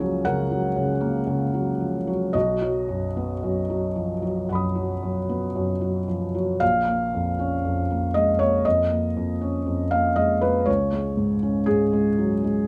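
Rubato pulse hovering around 56-60 BPM in 4/4 carries this short fragment of neoclassical minimalist piano, hopeful and intimate in mood, tuned to A4 = 441 Hz. A felt-muted upright piano plays solo across the full 12.7 seconds, spanning A#1 to D#6 with a soft, mellow tone, thick felt and audible action noise sitting up front in light reverb. Its phrase is stated twice, moving through F#/C# and B before turning to A#m at 6.6 seconds and reaching C#5 at 10.7 seconds.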